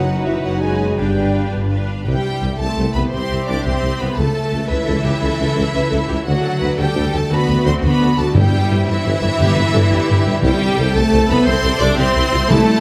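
Heroic and soaring, this cinematic adventure-score excerpt in C major moves at 115 BPM in 12/8, with a smooth, lightly vibrato violin section carrying the melody over a distant second violin line, lush violas, smooth cellos, expressive double basses and a bright, ringing concert harp, while an airy flute group and dark French horns sound only in the opening 1.5 seconds, a vintage-toned tuba joins at 2.1 seconds, and hard-mallet timpani enter at 8.3 seconds, the orchestra set within a moderate scoring-stage reverb.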